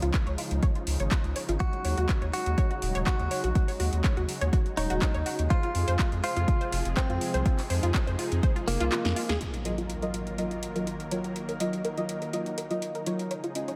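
An overdriven, up-front electronic kick drives this hopeful, expansive progressive house excerpt alongside a thick saturated sub bass, a deep house kit with punchy snare and metallic hats, an airy supersaw pad and a lush, grit-edged unison pluck playing arpeggios, both filter-swept and pumping with sidechain, while a twangy clean electric guitar melody with delay enters at 1.6 s, the kick drops out ahead of a drum fill, and at 9.4 s an electronic impact ushers in warbling, dark chorused chord stabs.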